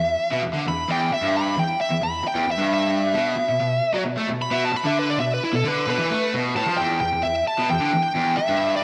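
A lush, big arena hall reverb surrounds this driving, heavy rock fragment, where a double-tracked, cranked stack guitar churns out a low overdriven riff up front while a smooth, bright lead guitar with slapback echo solos until 6.8 seconds and then carries the melody to the end, over a move from Em to B5 and back to Em.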